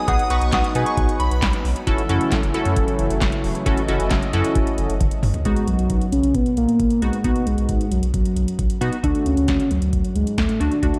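Nostalgic and wistful, this synth-pop excerpt at 134 BPM sets a soft octave-layered synth lead, a shimmering FM bell and a smooth, warbling analog pad over a punchy, funky detuned polysynth comp, a round, nasal analog bass and an up-front electro drum machine with a deep kick and metallic hats, bathed in shimmer reverb and a recital-hall ambience, with the pad ending at 5.4 seconds, a drum fill leading into the lead's return at 5.5 seconds, and chords moving from B through F#m7 to D.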